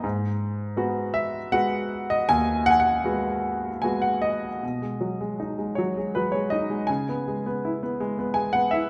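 Melancholic and reflective, this lyrical classical excerpt for solo concert grand piano unfolds in G# minor at 79 BPM in a rubato 3/4, its clear, natural tone with deep bass and short sustain sitting up front in a moderate recital hall reverb, spanning D#2 to G#5 as the harmony moves from G#m7 to B6 at 4.6 seconds and C#m7 at 6.9 seconds.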